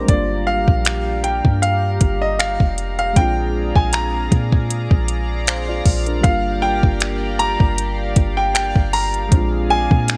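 A clear, natural grand piano carries the melody up front with a touch of delay over a moody, sensual contemporary R&B groove, with soft-kicked electronic drums of finger snaps, metallic hi-hat and kick adding tape-toned 12-bit sampler grit. A deep, boomy 808-style bass and mellow electric-piano-like synth keys with chorus and tremolo sit beneath, the keys adding a fill from 5.1 to 6.2 seconds, while a shimmering, detuned pulse-width pad holds bright, slow-blooming chords that pump with sidechain. The dry sound moves between Gm7 and Bb7 through this short cut from a longer piece.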